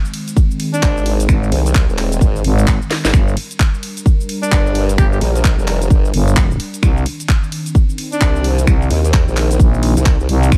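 An airy, detuned pad and a house drum kit with a cracking snare, cabasa, snaps and claps open this swaggering, aggressive bass house excerpt at 130 BPM, with a punchy kick arriving up front at 0.4 seconds and a drum fill at 2.9 seconds. A breathy, whispered alto saxophone in jazz style drifts in for brief phrases through a digital delay, while a saturated formant-sweep wobble bass and a thick, growling FM bass, both overdriven and pumping to the kick, dominate the low end. The harmony moves from Ab to Gm to Cmadd9 over a swung sixteenth-note groove, set in a digital ambience.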